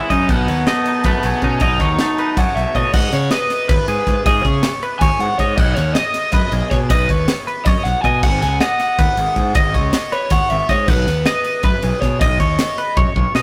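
A rough rehearsal-room recording with light reverb opens this short cut from a longer math rock and midwest emo piece, wistful yet bright, racing at 317 BPM in 7/8 over chords moving from B7 to G#m7 and B. An overdriven garage guitar carries the melody while a bright, compressed twelve-string electric guitar spins arpeggios above a round, fuzz-soaked fingered bass. An up-front drum kit with a punchy kick, a high-tuned snare, crash, ride and toms drives the music. A clean, twangy guitar with harmonic tremolo plays from the start until 2.9 seconds, and a drum fill beginning at 13.0 seconds closes the cut.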